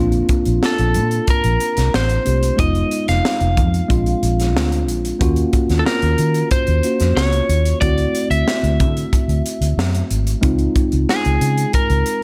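A lightly driven lead guitar carries the melody from 0.7 seconds, bright, twangy and slightly broken-up, sitting up front in this upbeat, breezy slice of polished 1980s jazz-funk pop. Beneath it, a mellow tine electric piano with lush chorus moves through rich chords such as Bbmaj9, Ebm9 and Dbmaj9, while a dark, round, foam-muted fingered electric bass anchors the low end. A crisp fusion drum kit of hi-hat, punchy kick and high-tuned snare, treated with gated reverb, drives the straight 4/4 feel in a dry mix cut from a longer piece.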